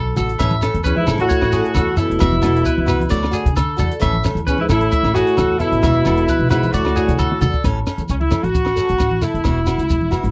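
A twangy, slightly broken-up electric guitar plays arpeggios with slapback echo over a woody, thumpy pizzicato upright bass, opening a carefree, sunny highlife guitar band groove in a dry, close 1970s-style studio sound. A boxy picked archtop guitar, a smooth compact cocktail drum kit with a punchy kick, bright low-tuned congas, grainy shekere and ringing agogo bells in the background join almost at once, and from 0.8 s a tight vintage horn section carries the melody up front, with a dark, breathy trombone playing a second line beneath it. A drum fill at 7.2 s leads into a new section, by which point the electric guitar and trombone have dropped out.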